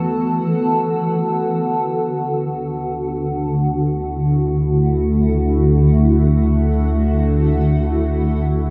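A shimmering pad sits up front through this luminous, weightless ambient fragment cut from a longer piece, holding sustained chords with slow attacks, long releases and a granular, octave-up sheen, colored by chorus, phaser and its own reverb. Beneath it, a round, deep analog bass with a faintly nasal edge sustains low notes for the full 8.7 seconds. At the opening, a very quiet drone built from sawtooth and pulse waves adds a resonant, evolving layer with chorus. A breathy, wind-like tuned noise texture hovers in the background with its own reverb. Both the drone and the noise drop out by 1.3 seconds, just as the harmony settles from E9sus4 onto Dadd9 at 1.2 seconds. A wet spring reverb surrounds the sound, giving the free-floating piece a soft, suspended glow.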